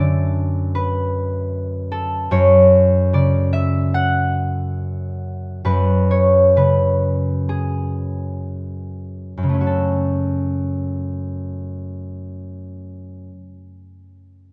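Classical solo harp in F# minor, mysterious and wistful, moving with a rubato feel at a tempo of 50-78 BPM that slows from 0.8 to 9.7 seconds. A concert harp, up front and fingerpicked, rings with a warm, acoustic tone across a range from F#2 to F#5, with harmony settling from Bm/F# onto F#m at 2.3 seconds. A wet recital-hall reverb lets the harp's sound bloom around it, and this cut from a longer piece shifts into a new section at 9.7 seconds before the harp stops at 13.3 seconds.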